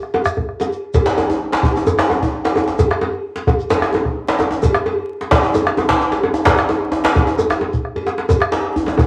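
A short West African drum-ensemble clip, heard through a wet studio reverb and a layer of vinyl crackle, moves at a driving, festive 131 BPM in a straight 4/4. A deep, dark bombo sits close and dry up front beside a tight, cracking djembe with a vintage, band-limited edge, while a second, medium-tuned djembe with metal rattles joins at 1.1 seconds from a large, distant room. A metallic cowbell rings in the background, a grainy, mellow shekere adds close texture, and a brief drum fill arrives at 8.0 seconds.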